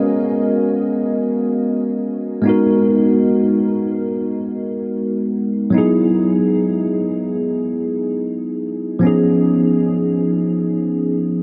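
A clean tine electric piano plays alone and up front through a combo amp, its lush chorus sinking into a huge ambient reverb with a 7.7-second tail, as this sensual, moody R&B fragment in G# minor, tuned to A4 = 441 Hz, drifts in free time through rich chords from G#m11 and G#m9 to Emaj9 at 5.7 seconds and C#9 at 9.0 seconds, leaving a dreamy, reverb-soaked haze.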